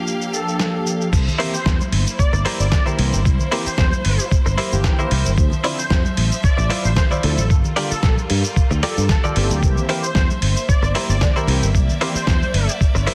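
Heavily compressed and radio-like inside a digital ambience, this sunny, groovy nu-disco excerpt in C mixolydian moves at 113 BPM with a light 16th-note swing, opening on a filter sweep from an analog polysynth over a gritty sampler-style soul kit, round detuned synth brass with chorus and dub echo, distant biting strings with sidechain pumping, and a thick wave-folded unison lead. At 1.1 s the drop arrives as a thumpy electronic kick and a growly, punchy fingered bass with tube saturation push up front, while soft-handed shaker and congas sit in the background. From 1.4 s a twangy, clean direct guitar riff with lush chorus joins over chords cycling through Gm7, C7 and Dm9.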